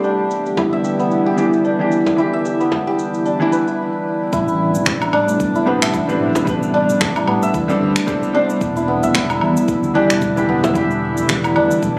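Organic downtempo in E minor at 112 BPM, swung on the sixteenths, with a meditative, mystical mood in this short cut from a longer piece. A warbling, detuned tape-like pad holds sustained chords through chorus and its own reverb, pumping under sidechain, while a bright, shimmering santur rings up front with filtered, delayed arpeggios and a barely audible bronze singing bowl hums beneath for the first 3.8 seconds. Electronic shaker, finger snaps and woodblock carry the groove through low-pass filtering, joined by a deep, dry frame drum struck with hard hands and, from 1.4 seconds, a felt-muted upright piano whose intimate, thin-felt tone brings audible action noise, delay and pumping. After a brief stop, the second section opens at 4.3 seconds as a round, punchy fretless bass with tube saturation and a deep electronic kick re-recorded in a large room arrive, the harmony moving from Em7 to Am11 and back to Em7. 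The mix sits in echo-chamber and small-room reverb with club ambience and compression, captured on a phone in the room.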